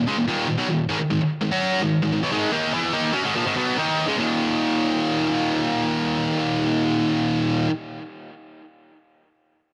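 Metal in an aggressive, dark mood, this brief excerpt features a lone high-gain electric guitar, bright, picked and double-tracked, sitting up front with distortion and tape echo in a lightly reverberant space, moving from its opening section into a second one at 4.2 seconds before the cut at 7.7 seconds.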